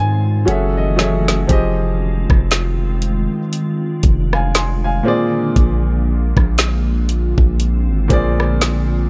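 Moody and longing, this slow contemporary R&B fragment at 59 BPM in F dorian sets an intimate baby grand piano, with audible action noise, over a glassy, warbling FM pad with chorus, reverb and sidechain pumping, a deep, sine-like 808-style bass, and a smooth R&B kit with knocking kick, woody snare and metallic hats entering at 0.5 seconds, as piano and drum fills open the passage before the harmony settles from Gbm7 to Fm7 at 1.5 seconds and Bb7 at 5.1 seconds in a digital ambience.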